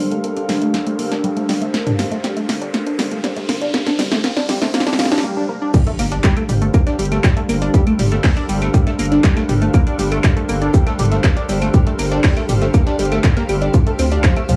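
A steady, straight 4/4 pulse at 120 BPM drives this cinematic, hypnotic melodic techno passage in G minor, cut from a longer piece and resting on a Gmadd9 chord before moving to Dm7 at 13.7 seconds. A punchy, up-front house drum kit of claves, crash, handclaps, hi-hat, snare and toms plays from the start, its fill running through a build-up where a filter sweep moves across the tight, driving sawtooth arpeggios, treated with chorus, phaser and analog delay, while a background riser and swell climb toward a brief break. At 5.7 seconds the drop lands with an electronic impact, a layered, punchy electronic kick up front, and a gritty, tape-warm sampler-style kit of hi-hat, shaker and snare tucked low in the mix. Underneath, a round, dark, wave-folded analog bass holds the low end, while a morphing, warbling vintage wavetable pad and a blurred granular cloud pad drift in the background with reverb. 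Sidechain pumping breathes through the pads, bass and arpeggio, and the whole piece carries a small-room, home-cassette character.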